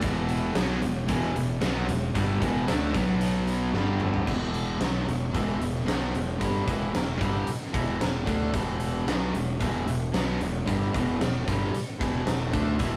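Driving and confident, this classic rock passage at 113 BPM moves through E5, B5 and G5 chords. A bright, cranked stack guitar and a sludgy overdriven guitar in the background play the riff over a growly fuzz fingered bass and an up-front big rock kit with a fat snare and punchy kick, while a thick, double-tracked fuzz guitar plays only until 4.3 s, where a drum fill from 3.7 s leads into the second section, heard in a rough rehearsal-room sound with moderate small-room reverb and warm saturation.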